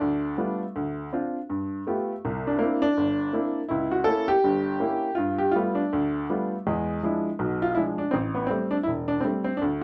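A worn, woody, slightly detuned upright piano sits up front and plays alone in this playful, relaxed solo jazz fragment in G mixolydian, swinging at 162 BPM through a G9, C9, C#dim7 and E7b9 progression that settles on Am7, wrapped in light reverb and a dark production.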